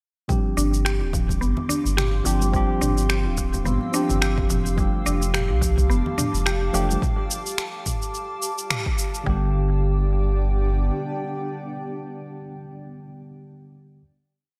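A deep, round sine sub bass sits up front in a dotted rhythm through this earthy organic downtempo piece in G mixolydian at 107 BPM with a swung 16th feel, under a punchy electronic kick, a deep house kit of finger snaps, shaker and low toms, and very quiet, close bongos and congas. A worn, slightly out-of-tune tine electric piano holds drop-2 chords with syncopated pushes through sidechain pumping and tape echo, while a woody FM mallet-like pluck repeats a 16-step arpeggio with chorus, and a blurred, evolving granular cloud pad with 12-bit sampler grit enters at 1.3 seconds. The groove moves from G7sus4 to F69, the band accents at 8.7 seconds, and the electric piano, pad and sub bass settle onto a final G chord at 9.3 seconds in a light reverb.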